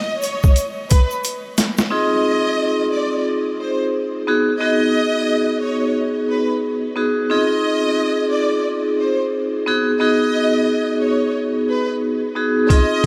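A swung 89 BPM boom-bap groove in 4/4 opens this confident, soulful hip-hop cut: a gritty, overdriven sampler-style drum kit with thumpy kick, high-tuned snare and hi-hat, plus a grainy tube shaker in the background, plays a short break and drum fill until 1.9 s, and the kit returns briefly at 12.7 s. A lush bowed violin section carries the melody throughout with soft-attack vibrato and diffuse ambient delay. From 1.9 s a bright, metallic vibraphone with medium hard mallets, slow motor vibrato and a cassette-tape colour rings out over alternating Ab6/C and B6 chords, all within a dreamy mix soaked in huge reverb.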